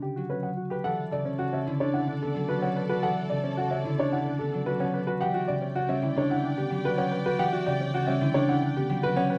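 A straight 4/4 pulse carries this meditative, hypnotic stretch of minimalist classical pattern music, cut from a longer piece, where a worn, boxy grand piano with audible action noise sings the melody over a ringing, up-front concert harp accompaniment and a natural concert grand with deep bass weaving arpeggios, while a lush, bowed string section with vibrato enters at 0.9 s to hold sustained chords, over a progression from Em9 to Bm9 and back to Em9 in a dark production with moderate studio reverb.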